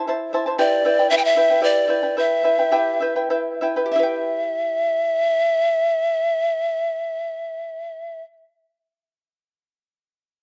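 Dry and close, as if captured in the open air, this melancholic, wistful Andean folk excerpt in E minor moves in 6/8 at 63-78 BPM (dotted quarters) and slows between 0.6 and 3.9 seconds, as an up-front acoustic charango, fingerpicked with shimmering double strings and touched by slapback echo, accompanies a close-miked bamboo pan flute whose breathy, warm tone, soft attack, chiff and vibrato carry the melody from 0.6 seconds.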